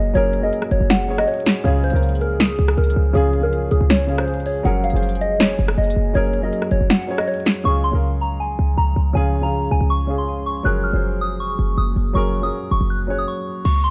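A soft, pure FM synth bell carries the wistful, dreamy melody, its mellow tone shimmering through chorus and phaser over a dark, short-sustained grand piano and a deep, moody sawtooth pad that sits in the background with a slow attack and long release. This hip hop and trap excerpt moves at 160 BPM in a half-time feel, cycling between Gbadd9 and Db, anchored by a punchy, tight 808-style bass up front. An electronic drum kit with a punchy snare, smooth hi-hats, rim clicks and crash cymbal drives the opening section from 0.2 to 7.6 seconds, then drops out until a brief return at 13.7 seconds, all within a dark, warm production with light reverb.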